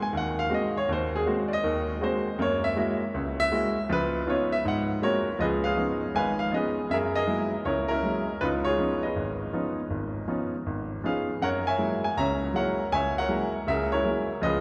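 A warm, up-front baby grand piano plays solo jazz with a relaxed swing, its natural, short-sustained tone moving through rich ninth chords over a span from deep bass to bright treble, all washed in the long, resonant reverb of a cathedral-like hall across this brief cut from a longer piece.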